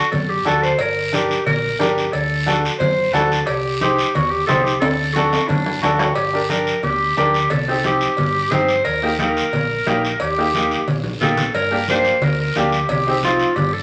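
Driving, fiery cumbia at 178 BPM that settles into G minor at 6.2 seconds, with a bright, jazz-style clarinet singing with vibrato and scooped notes over a brilliant, woody upright piano, a dark, round hollow-body electric bass, soft-handed congas, ringing metal-shell cowbell and timbales, and a raspy, saturated guiro, all set in a wet, large studio reverb, with a drum fill arriving at 4.8 seconds.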